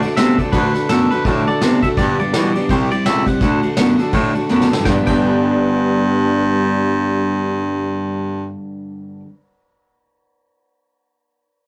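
A swung eighth-note shuffle at 166 BPM in 4/4 drives this short, upbeat rockabilly excerpt in G major, with a retro, rough rehearsal-room feel. A clear, up-front baritone saxophone carries the bass line with a smooth top, while a bright electric guitar through a small old amp, slightly broken-up and twangy, picks out the riff in the low register. A clean, compressed, twangy electric guitar picks the melody up high, and a bright dreadnought acoustic guitar picks along in the background for accompaniment. A vintage brush drum kit, dark and rolled-off with a tight kick and dark cymbals, plays a fill from 4.5 to 4.9 seconds leading into a new section, then drops out at 5.2 seconds, leaving the guitars and sax to carry on. The chords move from D through G, C and back to D before landing on G, all in a moderate studio ambience.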